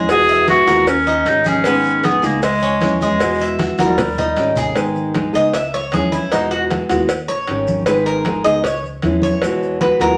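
A bright, soft-attacked clarinet carries the melody up front for the first 4.5 seconds of this sultry Cuban son and guajira excerpt in G# minor at 154 BPM, before the metallic, double-strung tres takes a picked solo from 4.8 seconds. Fingerpicked nylon-string guitar and a dark, woody pizzicato upright bass hold the harmony beneath, while hard-hand congas, a tight high-tuned cowbell, a raspy guiro in the background and grainy maracas drive the percussion, with a drum fill leading into the tres solo. A wet studio reverb and vinyl crackle colour the sound of this fragment cut from a longer piece.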